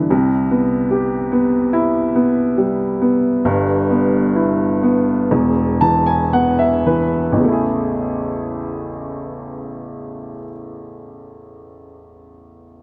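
Hopeful and heartfelt, this short pop excerpt features a solo upright piano with a woody, natural tone, placed up front in light reverb and spanning a broad range from the deep bass to the upper register. Moving in a straight 4/4 between 53 and 75 BPM, it slows from the opening through 7.4 seconds as the chords pass from Cmaj7 to G6 and E5, with a piano fill running from 5.3 to 7.4 seconds. A second passage then opens on Amaj7 at 7.4 seconds before the piano falls silent at 12.8 seconds.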